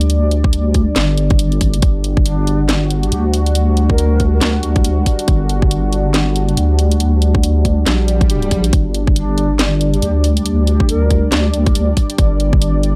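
A deep, saturated wobble bass sits up front in this meditative, cavernous deep dubstep excerpt at 139 BPM, felt in half-time with a swung sixteenth-note groove in G harmonic minor over a G5 chord. A tight, tape-flavoured electronic kick and a layered garage kit of handclaps, hi-hat and cracking snare drive beneath a moody, full-bodied analog pad with detuned sawtooth weight and chorus. A distant, airy ney with vibrato drifts through dub echo in the background from 2.3 and 9.2 seconds, while an electronic swell sounds at 8.0 seconds, all captured dry and gritty on hardware.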